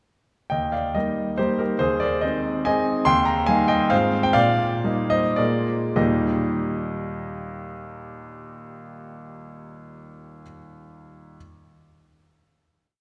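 A clear, intimate grand piano plays a proud, graceful romantic triple-time dance in Eb major, its tune in thirds over bass and chords on the beats, with dotted rhythms and free rubato between 98 and 150 BPM, slowing from 2.5 s before settling on a final Eb chord at 6.0 s, its audible action noise heard up front within a wet concert hall reverb.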